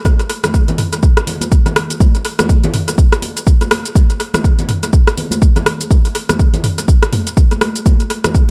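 Ringing, high-tuned congas struck with hard hands open this short cut from a longer spiritual, driving house track at 123 BPM with swung sixteenths, joined at 0.1 seconds by a deep, up-front electronic kick and a tape-warm deep house kit of metallic hi-hats, rim click, shaker and toms, with tape echo on both the congas and the kit in a dry, echo-heavy mix.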